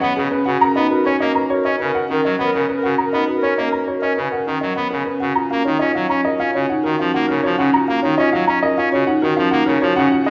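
A straight 4/4 pulse at 101 BPM drives this propulsive, hypnotic stretch of minimalist classical pattern music: soft-mallet marimba arpeggios roll round and mellow beneath a dark, intimate baby grand piano melody with audible action noise, a brassy, bright pipe organ trumpet stop with baroque voicing and chiff sits up front in the accompaniment, and a classical-style clarinet traces a second line in the background, set in a reverberant recital hall as the harmony moves from Abm7 to Bmaj7 and then to D#m7 at 5.4 s.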